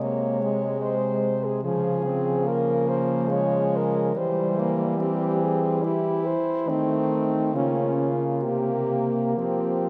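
In a rubato 3/4 at around 63-74 BPM, this solemn, elegiac classical passage for horn quartet sets a warm, close-miked French horn melody above a mellow second horn with vibrato and a smooth top sitting in the background, a clear, up-front accompanying horn with light vibrato and soft attack, and an up-front bass horn, all bathed in a 3.4-second church reverb as the harmony moves from Ab/C through Db and Adim/Eb to an open F5 at 9.4 seconds.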